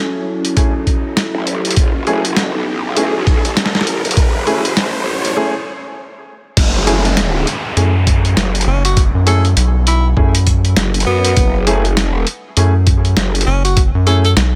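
Set in a light, digital ambience, this funky, gritty glitch hop excerpt moves at 100 BPM in 4/4 with a swung sixteenth-note feel, in F# minor over an F#m7 chord. The build-up opens with a warm, smooth and warbling analog pad in the background, treated with chorus and sidechain pumping, while a grand piano plays short stabs through a low-pass filter, dub echo and sidechain pumping; both the pad and the piano carry filter sweeps, and an electronic riser and downlifter add sound effects. A thumpy, pitched-down electronic kick and a boom bap sampler-style kit with crash, hi-hat and a medium-tuned snare sit up front, compressed, tape-colored and re-recorded in a small room. Beneath them a growling, aggressive growl bass wobbles with detuned unison voices, overdrive, chorus and a high-pass filter. After a short break the drop lands at 6.6 s, a rubbery, hollow and bouncy square bass joins at 7.8 s, and at 8.7 s a breathy tenor saxophone takes a jazz-style solo with vibrato, subtone and scooped notes, trailed by dub echo.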